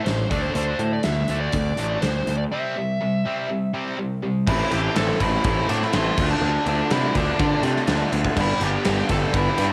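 A nasal lead guitar with a parked wah opens this aggressive, menacing hard rock excerpt at 123 BPM over a bright, picked distorted guitar riff and an overdriven electric guitar set in the background, joined almost at once by a growly fuzz bass and a punchy gated 80s drum kit in a stone room, both up front, before a lo-fi, double-tracked raw garage guitar takes over the riff at 4.5 s as the chords move from D5 and C through Am and Dm to G, all heard within a cassette home-recording ambience.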